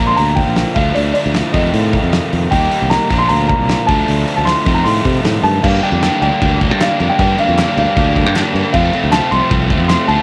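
Moody and bittersweet, this brief indie rock excerpt at 154 BPM in G minor pairs a dark, woody upright piano melody with two crunchy overdriven guitar riffs, one carrying analog chorus and delay, over a growly, up-front fingered bass and a loose small-room drum kit with a fat snare. The piano, guitars and drums carry cassette-tape grit in a home recording with little reverb, as the chords move from Bb through Dm and F7 into a Gm7 passage at 5.6 seconds where very quiet, hollow group handclaps join at 6.0 seconds.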